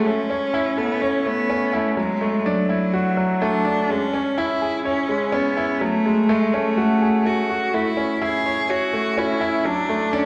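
Electronica with a tender, hopeful mood, this short cut from a longer piece pairs a bowed cello melody with a grand piano riff that run together throughout its roughly 10 seconds, over a progression moving from A through Dadd9, C#m and F#madd9 before returning to A and D. The piano sounds brilliant and intimate, with audible action noise and a delay on its riff, while the solo cello is focused and clear, singing with vibrato yet carrying a distant quality even though both parts sit up front. A generous scoring-stage reverb with a 1.8-second tail surrounds the pair in a dark production.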